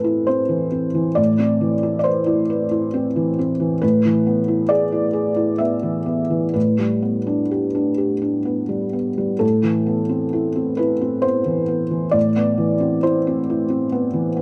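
Melancholic and intimate, this short neoclassical minimalist excerpt in A minor features a solo felt-muted upright piano, soft, mellow and up front, drifting in rubato 3/4 at around 62-69 BPM from A2 to E5 through Amadd9, E/A and G/A chords back to Amadd9 over 14.4 seconds, set in a moderate studio reverb.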